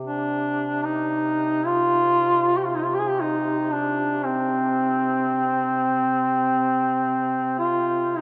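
Caucasian folk lament in a slow, rubato 4/4, with a longing, solemn mood across this 8.2-second fragment of a longer piece. A duduk carries the melody up front with vibrato and scooped notes, while a second duduk holds a low drone beneath it, both playing for the whole span. The pair sounds distant and roomy, wrapped in a wet cathedral reverb with a long, lingering tail.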